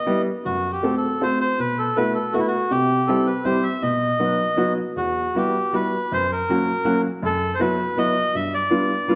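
This musette waltz, cut from a longer piece, moves in a flexible, rubato three-beat lilt and carries a bittersweet, nostalgic mood, with its tuning set slightly low at A4 = 435 Hz. A reedy, airy bandoneon sits up front from the opening moment, carrying the melody within a compact middle register. An upright piano joins at 0.1 seconds and stays close and present, its woody, clear tone supplying the accompaniment from the low bass up to the bandoneon's range. The harmony drifts through shadowed, searching colours, passing from F#dim and B7sus4 to C and B, then to Emadd9, F# and Bsus4/F# before landing on G7 near the end. A recital hall reverb with a long, wet tail surrounds both instruments and lends the brief passage a sense of space and faded memory.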